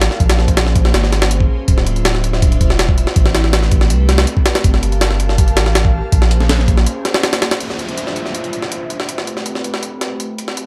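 A gritty, sampler-textured drum and bass cut in D minor at 162 BPM, with a digital ambience and an atmospheric, raw mood, built on a pitched-up, compressed jungle kit whose thumpy kick and high-tuned snare sit up front with a tape-warm, large-room character. A deep, round dub sub bass holds the low end until 6.9 s, beneath an airy, breathy pad carrying sustained minor ninth chords through chorus and vintage 12-bit grit. A very quiet, warbling flute-like lead touches a single note at 3.4 s, and an electronic downlifter runs from 7.6 s to 10.6 s.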